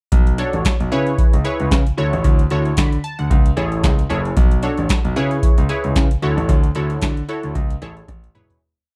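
Funky and late-night, this short early-eighties boogie funk piece at 113 BPM in B dorian rides a booming analog drum machine's four-on-the-floor beat, with a deep kick, crisp snare layered with handclaps and metallic hats, beneath a clear grand piano playing a fat, syncopated boogie bass line with slides and audible action noise. A chorused, detuned sawtooth polysynth punches out bright rootless chord stabs and short fills over Bm9, C#m7 and Dmaj9 changes, before a fade-out from 6.5 seconds and a closing drum fill at 8.1 seconds.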